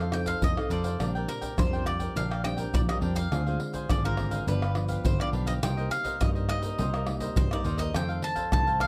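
A straight 4/4 samba and choro groove at 104 BPM in Bb major opens this sunny, playful fragment, where a deep surdo, pandeiro, tamborim and egg shaker played with hard hands sit up front in a small room from 0.1 s, under a round, foam-muted, amped electric bass, a full-bodied, dark fingerpicked nylon-string guitar and a crisp picked cavaquinho moving through chords like Bb69, Dm7b5, G7 and Cm7, while a bright, double-stringed bowl-back mandolin carries the melody, all captured with close, detailed microphones and little reverb.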